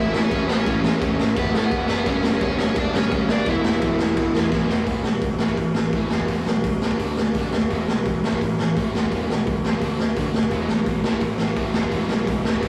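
Driven by a straight punk rock pulse from an up-front, gritty garage drum kit with a boomy kick, this rebellious, energetic cut opens with a hollow-body overdriven guitar melody that stops at 4.5 s as a drum fill launches the next section, while a dark, sludgy guitar riff, a bright picked distorted guitar riff and a double-tracked one that drops out at 4.9 s and returns at 10.5 s churn quietly alongside a punchy fuzz bass, all in a rough rehearsal-room sound with light reverb and saturation.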